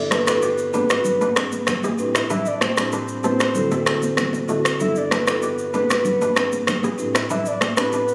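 An up-front, layered groove of electronic rim click, shaker and finger snaps drives this joyful, breezy afrobeats excerpt at 96 BPM in a straight 4/4, joined by bright, high-tuned congas struck with hard hands. In G major, a woody marimba and a crisp, ringing fingerpicked kora with tape echo weave through a G6, G#dim, Am11 and D7 progression, while a soft, round, octave-layered synth lead carries the melody with chorus, phaser, vibrato and tape echo. The mix has a compressed feel, as if captured on a phone in the studio, with light reverb and a touch of room ambience.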